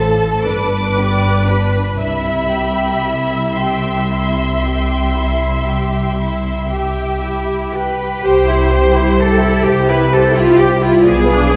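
Classical slow romantic movement for string orchestra in 12/8 with rubato, serene and lyrical, cut from a longer piece and heard from further back on a reverberant scoring stage. A close, expressive violin section carries the melody high with vibrato and portamento, while a focused second violin line, an intense, lush viola accompaniment, a clear cello bass and a rich, up-front double bass section fill out the bowed texture. The harmony settles from G to C early on and turns to a diminished chord at 11.0 s just before the 11.6 s cut.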